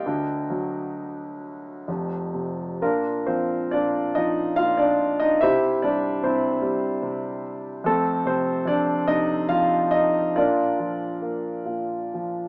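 A solo concert grand piano opens this peaceful classical excerpt, its warm, natural tone sitting up front with a deep bass, as the lyrical line moves freely in a relaxed triple metre with gentle rubato. At 2.8 seconds a new section begins on a Bbadd9 chord, then passes through C and F before settling on Bb at 10.4 seconds. A moderate studio reverb surrounds the instrument, and the sound has a small-speaker character.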